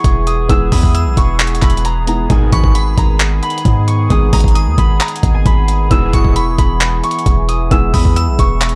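Hip hop with a half-time trap feel at 133 BPM, this eerie, melancholic piece sets a fingerpicked, ringing Celtic harp melody over a mellow grand piano in the background, both low-pass filtered, and an evolving, detuned sawtooth pad with chorus and phaser, moving from E to G#m and back to E. A boomy 808-style bass and a gritty, compressed sampler-style kit of thumpy kick, hi-hat and handclaps sit up front, while a glassy FM bell with chorus, phaser and delay joins at 0.7 s. A fat, detuned polysynth with delay adds short stabs at 2.3 and 5.9 s, in a dark production with little reverb.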